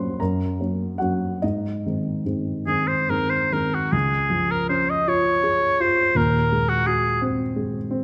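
A warm oboe with light vibrato and a smooth top enters at 2.7 seconds to sing a lyrical, serene romantic melody over a dark, mellow baby grand piano with audible action noise and short sustain, both up front in a moderate recital hall reverb as the 6/8 rubato moves from Gb and Ab harmonies toward Db and an Ab7 chord in this brief classical duo.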